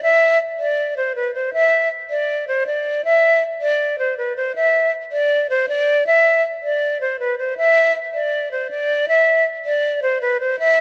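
A dark, warm production sits under a moderate plate reverb with a long tail, giving this short fragment from a longer hip hop piece a hazy, dreamy atmosphere. A lone concert flute carries the whole 10.8 seconds by itself, placed up front in the mix and softened further by a low-pass filter. Its tone is breathy and warm, with a gentle attack, vibrato and a slightly unsteady delivery that lends the line a fragile, human quality. The melody stays in a narrow band between B4 and E5, which keeps the mood wistful and inward. A relaxed half-time feel in 4/4 frames the passage, so the flute seems to float rather than drive forward.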